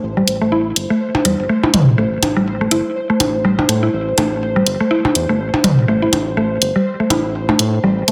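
A deep, round analog bass and a bright, detuned gated texture that pulses with chorus and its own reverb open this hypnotic, clinical minimal techno excerpt, which carries a swung sixteenth-note feel. They are joined almost at once by an up-front, woody mallet-like synth pluck riff with chorus and digital delay, and an up-front electronic hi-hat. At 1.1 s, layered electronic blips and toms with a tape-toned, small-room character and delay join in, dropping out at 7.6 s. The whole sits in a plate reverb within a dense, heavily limited modern master, holding on a single A minor chord throughout.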